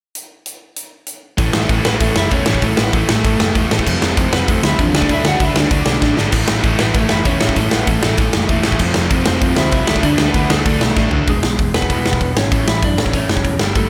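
A driving, straight 4/4 punk rock beat at 194 BPM opens this upbeat, energetic passage, with a big, up-front acoustic kit playing alone at first: a punchy kick, a medium-tuned snare, hi-hat, toms and crash, all ringing in a natural, roomy space. At 1.4 seconds two overdriven rhythm guitars enter in the background, one raw and bright with a slapback echo, the other sludgy and warm, alongside a dark, round hollow-body electric bass. A lightly driven lead guitar joins at 1.9 seconds, compressed and slightly broken-up, also carrying a slapback echo as it spans a high melodic range. The harmony moves through A, F and D, returns to A, moves to power-chord F5 and D5, then shifts to E and back to A, with drum fills marking the turns. The sludgy guitar drops out at 11.3 seconds as the final section begins, and the whole passage sits in a small room with light reverb before the cut.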